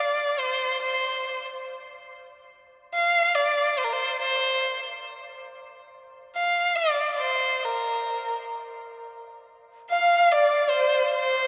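Rubato and unhurried at about 70 BPM in 4/4, this festive, graceful Chinese chamber excerpt sets a clear, focused solo erhu up front with vibrato and portamento carrying the melody from the start, joined at 9.9 s by a breathy, reedy bamboo xiao playing a second line, both blooming in the long tail of a vast cathedral reverb.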